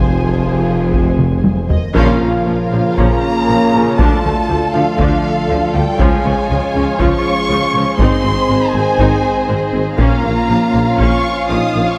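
Heroic and relentless, this cinematic, epic orchestral film score passage moves at 120 BPM in a straight 4/4 and is cut from a longer piece. Lush, bowed violins carry the melody with vibrato and a soft attack, while a second violin line sits beneath them and a clear, focused viola section supplies accompaniment in the background. A mellow French horn section and a bright, very quiet trombone section hold sustained chords, and the low end is built from a punchy tuba, a very quiet but rich cello section and a smooth, even double bass section. Taiko drums struck with hard sticks enter at 0.9 seconds as the loudest part, with a fill leading into a band accent at 2.0 seconds, where a hollow stopped-flute pipe organ with tremulant joins on sustained chords. The harmony moves from Fm through Bbm, Dm, Db and Ab before returning to Bbm, all bathed in a wet scoring-stage reverb.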